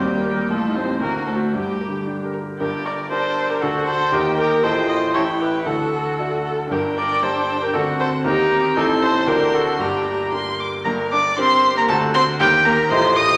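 In a brisk, straight 2/4 at 117 BPM, this quick classical-period movement for piano quintet in G minor feels urgent and stormy, and it is cut from a longer piece. The first violin carries the melody with a focused, vibrato-laden tone and a smooth top, climbing as high as Eb6. The cello sits in the background on a second line, while a second violin with light vibrato enters at 0.3 s with its own close, even second line. The viola fills out the accompaniment with a rich, steady tone. Up front, a bright and brilliant concert grand piano supports the strings with deep bass and long sustain. The harmony keeps circling through Eb, Am7b5, D7 and Gm, and the whole ensemble sits in a wet recital hall reverb.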